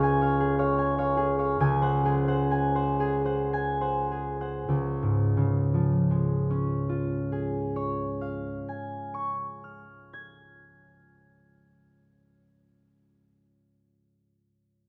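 A dreamy, serene classical piece for solo concert harp in 3/4, cut from a longer work, drifting in a free rubato between 49 and 81 BPM in Db major with tuning at A4 = 441 Hz. The thumb-plucked harp sounds bright and ringing, sitting up front and spanning Db2 to Ab6, and it moves from Db to Ab7/Db at 1.6 seconds while slowing down through the opening before settling back on Db at 4.7 seconds. A wet recital hall reverb surrounds the instrument and carries each note into the space.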